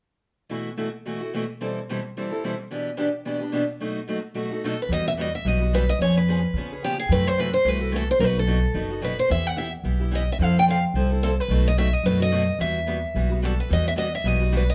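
A growly, woody upright bass sits up front from 4.9 seconds in this fiery, swinging excerpt of acoustic string swing, arriving just after a bright, boxy parlour steel-string guitar melody with audible finger squeak enters at 4.7 seconds. Both are driven by a second fresh-stringed picked guitar's up-front accompaniment that opens alone at 0.5 seconds, all heard as a band playing live in one room with moderate studio reverb.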